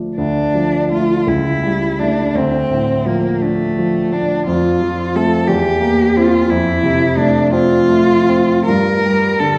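A grand piano opens in D minor, and a single bowed cello joins at 0.2 seconds, carrying the melody in this solemn, elegiac romantic duo in 6/8. The tempo sits around 50-61 BPM in dotted quarters and moves with a flexible rubato feel. The cello's tone is rich and focused, shaded with vibrato and placed up front. The warm, polished piano supports it from its lower and middle register, also sitting present and close. The harmony moves from D minor through A7/C# and back, then turns to F and C7/E before settling on G minor near 8.7 seconds. A wet scoring-stage reverb with a long tail places the pair further back in the room, and the passage is cut from a longer piece.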